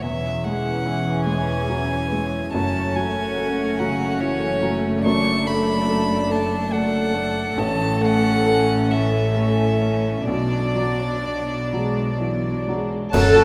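In a 6/8 with a rubato feel, this sorrowful, moving film-score passage is cut from a longer piece. A solo violin carries the melody with an airy, floating sul tasto bow, joined by an intimate chamber violin section. A second violin section adds a pure, smooth counterline. Beneath them, a dark viola section and a felt-muted upright piano, mellow and vintage with audible action noise, fill out the accompaniment. A ringing, fingerpicked concert harp adds arpeggios, while cello and double bass sections anchor the low end with light vibrato and soft attacks. At 10.3 seconds a cymbal swell, bright clash cymbals and a concert bass drum arrive, close and dry against the moderate concert hall reverb. At 13.1 seconds a brief accent adds a clear, distant clarinet, an airy flute ensemble, an oboe with vibrato and very quiet, tight French horn chords.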